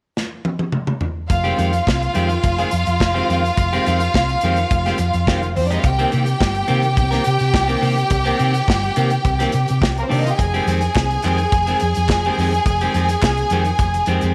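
Light reverb and a small-room ambience frame this sultry, driving disco excerpt in F minor at 106 BPM, which opens with a drum fill on a punchy, up-front studio kit before the band enters at 1.3 seconds. A round, dark hollow-body bass anchors the groove, while a clean, picked electric guitar with spring reverb adds accompaniment and a bright, biting violin section plays a lush, vibrato-rich second line over chords moving from Fm9 to Cm7 and back. Very quiet, crisp group handclaps join from 11.0 to 13.4 seconds.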